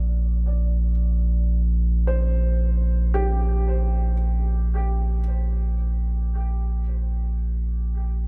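A deep, round analog bass holds a sustained, up-front Bb1 under a serene, free-time ambient fragment in Bb major, while a felt-muted upright piano fades in over the full 8.3 seconds with intimate, mellow arpeggios between G4 and D5, its audible action noise trailing into a diffuse ambient delay within a reverberant studio space.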